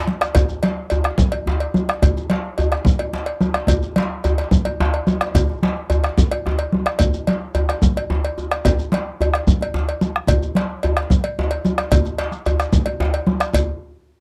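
A short drum fill opens this festive, earthy West African drum ensemble piece, cut from a longer performance, with congas and djembe sounding at 0.1 seconds and the bombo, cowbell and shekere joining at 0.2 seconds. The groove moves in 12/8 at 146 BPM, counted in dotted quarters, and the tempo gradually speeds up across the whole clip. The bombo anchors the bottom with a deep, dark tone, while the djembe sits up front with a tight, cracking sound that carries the feel of a large room. The congas are bright and damped, with a thin-skinned, vintage, band-limited character from soft hands. The cowbell adds a metallic edge, close and dry, and the shekere contributes a grainy, mellow texture. Light reverb and close, detailed microphones keep each acoustic part distinct through to the end at 13.7 seconds.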